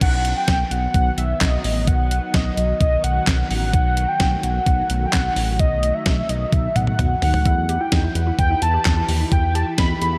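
This short excerpt has a big arena sound, bathed in a lush hall reverb that lends the synth-pop groove a melancholic, nocturnal mood at 129 BPM in a straight 4/4. Up front, a velvety lead built from detuned sawtooth and triangle waves carries the melody with chorus and vibrato, sitting high over a dark, smooth bass of sawtooth and square tones that glides between notes. A clean 12-bit drum machine drives the track with a thumpy kick, fat snare, handclaps, hi-hat, toms and crash cymbal, its sampler-style hits tape-tinged and prominent, and a drum fill runs from 6.5 to 7.5 seconds. Behind them, a silky vintage string machine holds soft, slow-blooming chords through a phaser and ensemble chorus. At 7.5 seconds, as the harmony moves from B to E minor, a warbling, lo-fi pluck enters in the background with detuned, decaying arpeggios, coloured by a noise layer, a filter sweep, slapback echo and analog delay.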